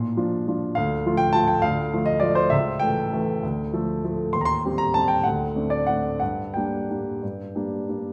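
Bittersweet and wistful, this short passage cut from a longer classical piano waltz moves in a rubato 3/4 at 171-214 BPM, as a solo baby grand with a polished, up-front tone carries chords from Bb through Dm and A7/C# to settle on Gm at 6.2 seconds, set in a wet recital-hall reverb.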